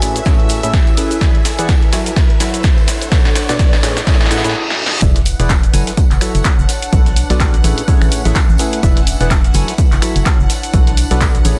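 Piano house at 126 BPM in E mixolydian, euphoric and uplifting, where a hollow, mellow organ stab riff with lush chorus and dub echo rides over a punchy up-front kick, snaps, claps, hi-hats, shaker and a quiet tambourine, shimmering vintage string-machine violins and an airy breathy pad pumping in the background, while a riser and reverse cymbal build toward a drop at 5.0 seconds, where a dark organ-like FM bass and a very quiet, gritty breakbeat kit enter over the Amaj7, E7, F#m7 and Bm7 cycle in a dense, heavily limited mix.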